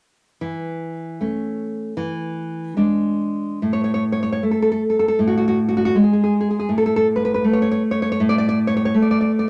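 A fingerpicked nylon-string guitar, full-bodied and up front, opens this sunny, tender excerpt of a romantic solo classical piece in A major, moving in a rubato 2/4 at 67-82 BPM through A/E and E7 and later F#madd9/A, its deep classical tone framed by a moderate studio reverb.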